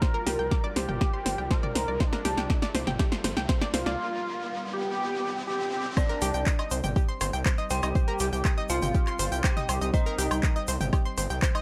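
A straight 4/4 pulse drives this dark, dramatic melodic techno excerpt, with a deep, tape-tinged electronic kick sitting up front beside an overdriven deep house kit of handclaps, punchy snare, metallic hats, toms and woodblock, which plays a fill through the first 4.0 seconds. Underneath, a gritty, aggressive synth bass with a resonant, saturated sawtooth edge pumps against the kick, while a very quiet, moody pad holds sustained chords moving from Gm7 to Cmadd9. An analog pluck, round and bright with chorus and delay, spins arpeggios above a thick, nasal unison lead that carries the melody with vibrato. A background riser builds through a short break, and at 6.0 seconds the drop arrives, bringing in an eerie, inharmonic FM bell as a second line along with a grainy tube shaker. The dry, gritty hardware sound is set in a digital ambience.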